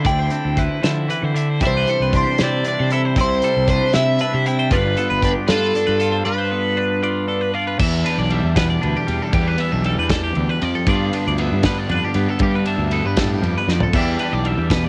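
Two bright, twangy twelve-string electric guitars open this wistful, intricate math rock and midwest emo piece, one playing chords low in the register while the other picks arpeggios above it, both clean, compressed and faintly worn by cassette tape. Beneath them, a fingered electric bass with growly, punchy fuzz holds down the low end, and a loose indie drum kit with dark cymbals, a tight kick and a rolled-off top sits up front in a small room. At 0.1 seconds a crunchy overdriven lead guitar, colored by phaser, carries the melody through the first section, which moves from Dm11 to Cmaj9 to G9, until it stops at 7.5 seconds, just after a break begins at 6.3 seconds. The second section shifts to Em7 and G7 in 6/8 at 78 dotted-quarter beats per minute, and a drum fill at 13.7 seconds sets up the return to Em7 before the cut. The whole track has the intimate, slightly hazy character of a home recording on cassette.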